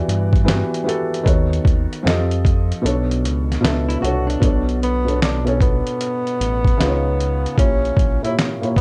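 A felt-muted upright piano, soft and intimate with audible action noise, opens this melancholic, reflective lo-fi hip hop excerpt over a round, dark analog bass, joined at once by a gritty, overdriven sampler-style drum kit with a thumpy kick and fat snare, swung and up front. The kick drops out briefly from 2.8 seconds, and a dark, slightly broken-up electric guitar slips in a short second line through analog delay at 3.9 seconds. From 4.8 seconds a breathy tenor saxophone takes the melody with subtone, vibrato and scooped notes, all wrapped in a light cassette-tape haze.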